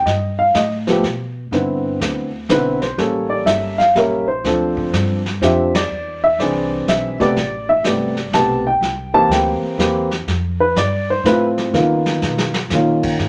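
A dark, mellow upright piano carries the melody up front, its woody tone and audible action noise giving this swinging jazz waltz an intimate, vintage feel as it moves through rich chords such as Cmaj9, A7b9 and Db13. Beneath it, a pizzicato upright bass with a steel-strung, woody sound and a vintage brush kit with dark cymbals, a punchy kick and a rolled-off top keep the swung 3/4 pulse warm in a moderately reverberant studio room. The band hits a shared accent at 5.7 seconds, and the drums play a short fill at 12.2 seconds near the close of this excerpt from a longer piece.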